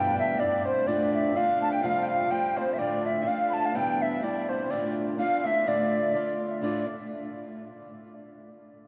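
A wooden flute, a breathy synth lead and a fingerpicked acoustic guitar all begin together at the start of this short Celtic folk excerpt, cut from a longer piece. The mood is dark yet lively and driving, in a swung 2/4 feel. The wooden flute carries the melody up front, its pure, woody tone shaped by vibrato, a crisp attack and lifted highs. Beneath it, a softer flute-like synth adds a second line, sustained and airy, with a noise layer, a sub octave, vibrato and a chorus shimmer. The old ladder-braced guitar, also up front, gives a boxy, dusky accompaniment from its worn strings, moving through Em7, Dm and Fadd9. Everything sits in a cavernous church or concert-hall space, bathed in a long cathedral reverb that rings for 6.0 seconds.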